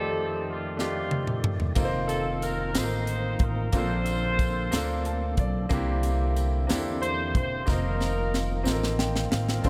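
A vintage, tight horn section carries the melody over a brilliant grand piano and a fat, lightly overdriven tonewheel organ with key click and slow rotary speaker in this jubilant, soulful slow gospel excerpt in 6/8 at 61 BPM, with a dry, up-front funk drum kit entering at 0.8 seconds, a woody pizzicato upright bass and a jingly tambourine joining at 1.8 seconds, drum and piano fills dotting chords that move from F13 through F7sus4, Bbmaj9 and C9, and a lush bowed string section arriving in the background at 9.7 seconds, in a moderate concert hall reverb.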